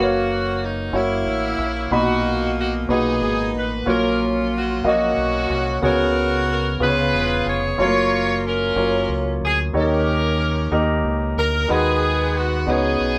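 Uplifting and reverent, this slow gospel excerpt in 6/8 at 61 BPM in F# major features an edgy, vibrato-laden saxophone section carrying the melody up front, a warm concert grand piano accompanying with deep bass, and a round, punchy fingered electric bass anchoring a progression that moves from F#maj7 through Bmaj7 and C#7sus4 to a closing C#9sus4, all captured as a band playing live in one room with light reverb.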